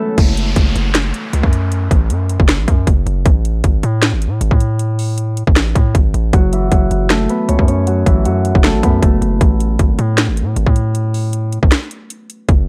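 Menacing and hard-hitting, this short cut from a longer trap piece sits in F# minor at 156 BPM with a half-time feel. A fingerpicked Celtic harp carries the melody with a ringing, acoustic tone softened by a low-pass filter, playing from the start to 3.1 seconds and again from 6.3 seconds, with a filter sweep running across it. Up front, a heavy, distorted 808-style bass hits with a fast attack and decays, its saturated sine core roughened by a noise layer. The trap kit pairs a hard-clipped kick with a sharp snare, metallic hats, finger snaps and crash cymbal, all coloured by vintage 12-bit sampler grit. An electronic downlifter descends through the opening seconds, the harmony alternates between F# minor and chordless stretches, and a break arrives at 9.4 seconds, all set in a digital ambience.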